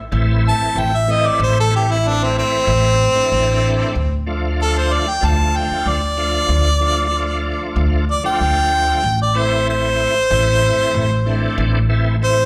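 A clear, punchy harmonica carries the melody from 0.5 seconds, close-miked and up front with light vibrato, scooped notes and a slapback echo, soloing through this brooding, mournful excerpt of straight-eighth soul blues in A minor at 94 BPM. Beneath it, a woody, dark pizzicato upright bass on steel strings sits up front, while a bright, shouting tonewheel organ with chorus vibrato, slow rotary speaker and slapback echo fills in the chords, moving from Am to Dm at 3.9 seconds and back to Am at 9.0 seconds. The performance has the feel of a live club gig heard through the venue's PA, with light club reverb.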